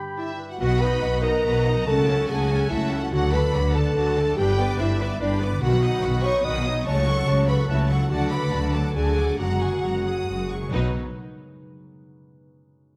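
Mellow, tightly blended French horns hold sustained chords beneath a lush, vibrato-rich violin melody in this heroic, adventurous film-score excerpt in 3/4 at 144 BPM, with a focused second violin line, clear, intense violas in the background, expressive cellos and distant, smooth double basses carrying the bass, and a ringing, fingerpicked concert harp playing arpeggios from 0.0 to 12.1 seconds, inside a moderate scoring-stage reverb as the tempo slows between 7.5 and 10.7 seconds.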